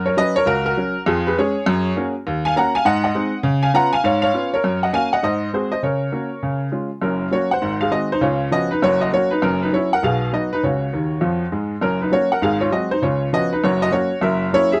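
A close, detailed, nearly dry recording puts a clear, woody, slightly detuned upright piano up front, its long sustain ringing through this exuberant, playful stride jazz cut from a longer piece, swinging at 200 BPM in F# major across a range from F#1 to A#5, with chords moving through F#, D#m7, G#7, C#7 and B6 and a brief fill at 10.9 seconds before the passage turns back home.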